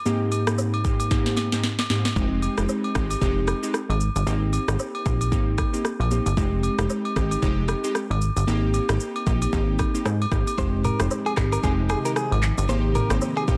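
A dense, heavily limited modern mix with light reverb carries this mellow, hypnotic afrobeats excerpt in F minor at 114 BPM, swung on the sixteenths, where glassy, chorused digital keys and an up-front electronic kit with a deep kick and sharp snare open together, joined by close, dry agogo bells and woodblock. After a drum fill, a punchy, funky analog bass with a plucky filtered attack enters at 2.2 seconds as the chords alternate between Abmaj7 and Fm7. Near the end, a bright, clean, direct-recorded electric guitar riff with tape echo appears at 10.6 seconds, and an ethereal, detuned pad with ensemble chorus and built-in reverb sits in the background from 11.2 seconds.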